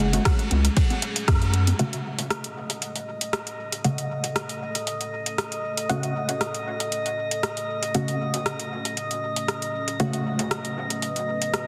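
A round, deep analog bass sits up front in this hazy, nocturnal dub techno excerpt, pumping against a deep electronic kick through the opening bars before both fall away by about 1.8 seconds, taking the small-room congas with them. A dark, warbling ambient pad holds sustained F# minor chords throughout, its detuned sawtooth unison softened by chorus and its own reverb. At 1.8 seconds, muted, mellow sawtooth chord stabs with a filter-pluck snap take over, moving through a filter sweep and colored by chorus, phaser and dub echo. From 2.5 seconds a glassy texture of drifting overtones hovers high above, calm and bright. Through it all, a lightly swung deep house kit of metallic hi-hats, ride cymbal and rim clicks ticks away with dub echo, while a wet echo-chamber reverb and heavily compressed, radio-like sound wrap the mix in haze.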